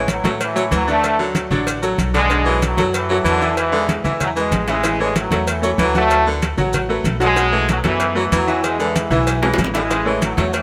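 A driving salsa groove in straight 4/4 sets a festive, joyful tone in this short passage cut from a longer piece, built on a repeating progression that moves from A6 through D6 and Bm7 (later B5) to E before circling back. Warm congas with a thick, damped skin sit in the background from 0.1 seconds, alongside round, low-tuned cowbell and bongos with a compressed, saturated edge and grainy, close maracas, and a drum fill breaks through at 9.4 seconds. An upright bass plucks a woody, growly, thumpy line low beneath it all, while a bright concert grand piano with a worn character and deep bass fills out the accompaniment. The brilliant, tight trombone section carries the melody with a present, pop-style attack. A breathy baritone saxophone with vibrato adds a second line, and a moderate plate reverb gives the ensemble a sense of space.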